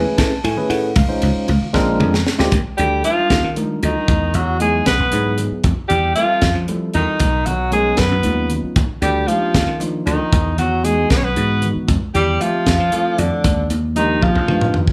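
Soaring and funky, this electric jazz fusion excerpt moves at 77 BPM in a straight 6/8, with a tight, up-front funk kit and its high-tuned snare sitting alongside a growly, punchy thumbed slap bass, very quiet ringing congas, and a clean tine electric piano comping on lush major-ninth chords. After a drum fill from 1.7 to 2.5 seconds, a bright, vintage-toned alto saxophone takes the melody at 2.8 seconds, joined an octave lower by a present tenor saxophone playing a second line with vibrato and scooped notes. The band plays live in one large studio room with moderate reverb, and another drum fill closes the passage at 14.2 seconds.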